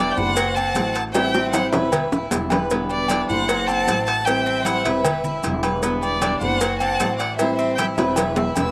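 Dry with little reverb and an open-air feel, this danceable excerpt of Cuban son and guajira puts a single bowed violin up front, its expressive vibrato and portamento gliding over a lush, focused violin section in the background, both carrying a slapback echo, as does the tres with its metallic, double-strung picked arpeggios. Beneath them, a thumb-plucked nylon-string guitar with audible finger squeak and a woody, thumpy pizzicato upright bass support the repeating chord cycle, while grainy maracas, ringing agogo bells and timbales, round low-tuned cowbell and bongos, and damped, thick-skinned congas fill out the percussion. Drum fills arrive at 1.1 and 8.0 seconds.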